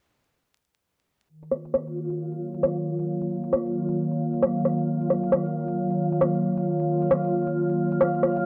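Gritty, crackling lo-fi sound in a moderate concert hall reverb frames this nocturnal, melancholic future garage excerpt at 134 BPM in Eb minor, where a warbling, detuned tape-like pad holds a dark Ebm7 chord with chorus from 1.3 s, a reversed, granular swelling texture enters dreamily at 1.6 s, and an overdriven, up-front electronic garage kit of swung hi-hat and rim click plays beneath a filter sweep.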